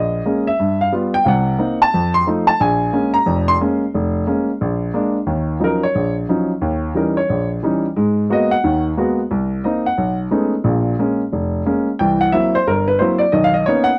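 The recording is dry and close, with the feel of a 1970s studio session, placing a warm baby grand piano up front in the room. This short jazz fragment is smoky and cool, a solo piano passage in 4/4 with a swung eighth-note feel. The piano covers a broad span from F1 up to C6, and its natural tone has a short sustain that keeps each chord crisp. The opening phrase moves through a Bbm7, G7, Cm7b5 and F7 turnaround before settling back and shifting to Bb7. At 5.3 s the harmony moves to a new centre, opening on an Ebm9 and passing through richer colours such as Eb7b9, Abm9 and B13. The passage ends on a Bmaj9 at 13.3 s, before the cut at 14.0 s.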